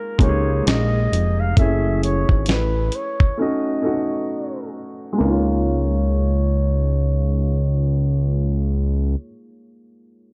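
Lo-fi hip hop at 66 BPM in Db major, a cosy, nostalgic fragment cut from a longer piece, where a breathy, distant flugelhorn with light vibrato carries the melody over a soft, felt-muted upright piano coloured by cassette tape, a thick, nasal, detuned analog bass sits up front with a filter sweep through the opening 5.2 seconds, and a gritty, compressed sampler-style drum kit with a thumpy kick and fat snare plays until 3.4 s before a break leads into the second section, all set in a dark, small-room production.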